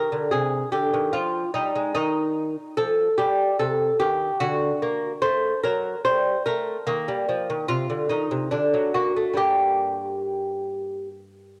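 Introspective and grave, this brief excerpt of a baroque-style dance in triple time features a solo lute, fingerpicked on gut double strings with some octave-doubled courses, its bright, delicate tone up front in a small room with light reverb and the character of a home cassette recording, moving with uneven, rubato beats through dark harmonies that settle on G minor at 6.1 seconds and again at 9.4 seconds.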